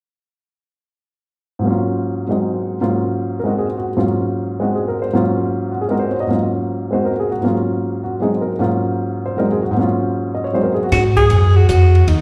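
Heard live through a venue's PA with a moderate club reverb, this hypnotic, cool modal jazz fragment swings in 3/4 at 155 BPM. An intimate baby grand piano, with short sustain and audible action noise, voices a G#13sus4 alone from 1.6 seconds, treated with plate reverb and slapback echo. At 10.9 seconds the harmony moves to G#7(no3) as a breathy, close-miked alto saxophone with soft attack and vibrato takes the solo melody, joined by a woody pizzicato upright bass up front and a dark, smooth cocktail drum kit with a high-tuned snare, tight kick and rolled-off top.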